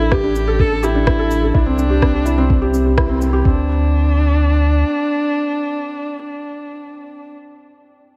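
Piano and strings electronica at 126 BPM in 4/4 with a straight feel, this short cinematic, hypnotic cut from a longer piece opens on a drop that runs to 3.5 seconds, moving from A7sus4 to Cadd9 before settling on Csus2/D. A dark, woody solo viola carries the melody up front with vibrato and a delay trail, while a felt-muted upright piano plays a mellow, intimate riff through thick felt, also touched with delay and sounding until 8.2 seconds. Underneath, a round sine sub bass sits forward in the mix with a fast attack and sidechain pumping, dropping out at 4.8 seconds. A compressed, pitched-down kick with a muffled thump and a layered electronic rim click and shaker drive the opening, with a band accent at 3.0 seconds before the drums stop and the second section leaves viola and piano over bass that lingers briefly. Light reverb gives the whole a small-room ambience.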